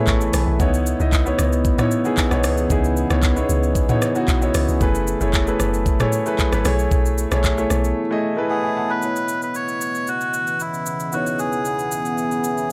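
A dry, gritty hardware recording with a digital ambience frames this soulful, hypnotic amapiano excerpt in a straight 4/4. A concert grand piano sits up front with audible action noise, long sustain and a polished, intimate tone, carrying chords that move from B13sus4 through C#m9 and F#m11. Beneath it, a deep, moody ambient pad of detuned sawtooth and sine layers with a sub octave, ring modulation, chorus and reverb holds sustained chords. A round, percussive log drum bass with a fast attack and tube saturation anchors the low end until 7.9 seconds, while an electronic afro-pop kit of knocking kick, metallic hats, handclaps, rim click, shaker and toms, re-recorded in a large room, stays prominent throughout. During a short break, a reedy, breathy, nasal melodica enters at 8.5 seconds, close-miked and carrying the melody through tape echo as the chords return to C#m9.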